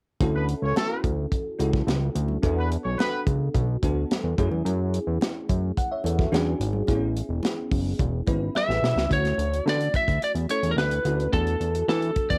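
A straight 4/4 groove at 108 BPM drives this breezy, urban slice of polished 1980s jazz-funk pop, with a tight funk kit's high-tuned snare and snug kick sitting up front beside a fat, saturated analog bass and very quiet, hard-hand congas that drop away at 9.1 seconds. A sparkling, bell-like FM electric piano with chorus comps through lush chords such as Dmaj9, F#m9 and E13, while a warm, smooth-topped horn section with light vibrato adds a brief second line near the start, and piano and drum fills lead into the closing part. From 8.6 seconds a bright, twangy, slightly broken-up lead guitar takes the melody, all heard through a light reverb and the soft haze of a home cassette recording.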